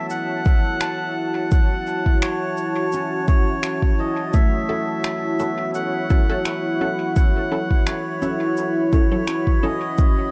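Ambient dub at 85 BPM in F# minor, deep and spacious over a single F#m7 chord, with an up-front layered electronic kick beneath a moody, detuned sawtooth pad carrying chorus and its own reverb, a reedy, breathy melodica melody and background fingerpicked harp arpeggios both trailing dub echo, overdriven electronic cabasa and finger snaps, and a muted, phased dub chord stab entering at 4.7 seconds, all in a dark production with light digital ambience.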